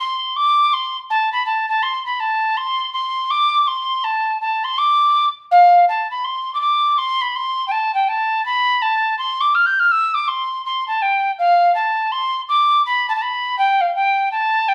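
Dark yet lively and spirited, this brief fragment of a longer Celtic folk piece moves at a brisk 164 BPM in 4/4, its eighth notes carrying a noticeable swing. A lone tin whistle plays throughout, its metallic, airy tone softened into something mellow, with touches of vibrato and a crisp chiff at the start of tongued notes. The melody sits high, ranging from F5 up to G6. A first section runs until about 5.5 seconds, and a second section carries the tune through to 14.7 seconds. The whistle feels close and up front, yet a moderate reverb from a large studio room lends it a faintly distant, live-in-the-room quality.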